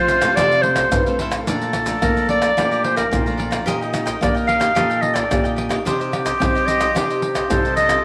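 A moderate echo-chamber reverb surrounds this festive, joyful samba and choro excerpt, where an up-front clarinet in classical style carries the melody over a breathy, tongued, close-miked silver concert flute playing an expressive second line, while a crisp, bright cavaquinho and a fingerpicked classical nylon-string guitar sit in the background, a full-bodied nylon-string guitar with audible finger squeak plays the bass, and vintage, band-limited maracas, pandeiro, deep surdo and tamborim, played with soft hands, sit up front from 0.1 s.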